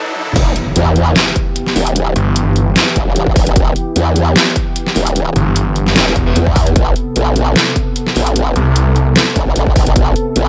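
A growling, wobbling bass sits up front in this heavy wobble dubstep cut, saturated and chorused, holding between E1 and E2 from 0.4 s onward in a menacing, aggressive mood. The track runs at 150 BPM in 4/4 with a half-time feel and a light swing on the sixteenths, in E minor. A brief break with a riser and a drum fill leads into the drop at 0.4 s, where an electronic impact lands and a punchy, overdriven kick joins a layered dubstep kit with a deep snare, crash cymbal, hi-hat and toms, re-recorded in a small room. A snarling, detuned sawtooth bass with a moving notch and distortion cuts in briefly at 2.2 s and returns from 5.4 to 9.1 s, while a lush, evolving supersaw pad sustains chords underneath with sidechain pumping and a low-pass filter. A very quiet, double-tracked fuzz guitar adds picked stabs, and the harmony moves from Em to Amadd9 at 6.8 s. The mix is dry and loud, with a high-pass filter over the whole.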